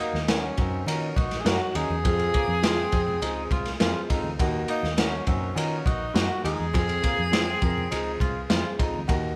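Captured as a band playing live in one room with moderate studio reverb, this urgent, driving cut from a longer 1960s-style soul piece rides on a crunchy, saturated breakbeat kit of kick, snare and dark ride cymbal, a round, punchy foam-muted fingered bass and a clear concert grand piano accompaniment, while a dark, slightly broken-up guitar riff sits in the background, a twangy, lo-fi second guitar adds stabs with harmonic tremolo from 0.3 seconds, very quiet thick-skinned congas sit underneath, a bright baritone saxophone riff joins at 0.6 seconds, and a mellow, distant tenor saxophone carries the jazz-style melody with vibrato and subtone over a minor chord pattern.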